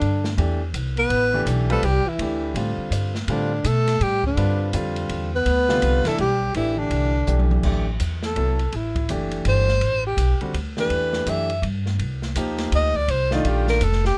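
Close, detailed microphones and very little reverb give this modal jazz excerpt an intimate, dry presence, in a spiritual, searching mood at 165 BPM in a swung 3/4 in D dorian. A breathy alto saxophone carries the melody up front with a whispered subtone, soft attacks, scooped notes and gentle vibrato. A mellow trombone sits in the background on a second line, and it drops out at 7.5 seconds. The woody, pizzicato upright bass on steel strings stays prominent beneath them, while a baby grand piano adds accompaniment with long sustain. An acoustic drum kit in a small room sounds dark and smooth, with a boomy kick, a medium-tuned snare and a rolled-off top. After a brief drum fill, the saxophone takes a solo from 7.6 seconds as the harmony moves from D9sus4 through an A7 chord omitting the third to Cm9.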